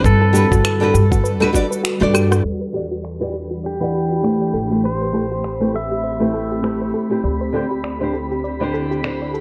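A fingerpicked nylon-string guitar with tape echo, a woody pizzicato upright bass, an ethereal, detuned pad in the background, a soft, round arpeggiated pluck, and a gritty, overdriven electronic kick that stops at 1.7 seconds open this smooth sunset chillout excerpt together at 100 BPM in A dorian. A clean pedal steel guitar carries the melody with volume swells and slide through digital delay, while layered electronic cabasa, finger snaps, claves and rim click play over a swung sixteenth-note feel. After a drum fill, a filter sweep runs on the pluck from 2.4 seconds as the chords move from Gmaj9 through Em9 and Am9 to D9sus4, and a twinkling granular texture with octave-up shimmer joins at 4.2 seconds.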